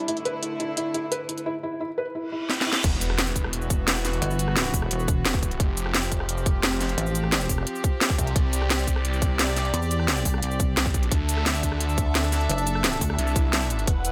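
Driving straight 4/4 at 174 BPM, this tense, dark slice of technical drum and bass opens with a crisp, cracking electronic kit and a rich, floating bowed string section holding sustained chords under a soft, felt-muted upright piano playing intimate arpeggios with tape echo, both ducking under sidechain pumping. A filter sweep and a very quiet reverse cymbal build toward a drum fill, and at 2.8 seconds the piano stops as the drop arrives with a tight, layered electronic kick and a swirling, thick phased saw bass, detuned and tube-saturated, surging on the pump. A pulsing, heavy pluck wobble bass with chorus joins in two stretches, and the harmony moves from E minor through F and C to D. A faint impact and swell mark the edges of the drop, and the kick falls away briefly near the close before the cut. The mix sits in light reverb and digital ambience, low-passed, with the basses, piano and kit kept up front.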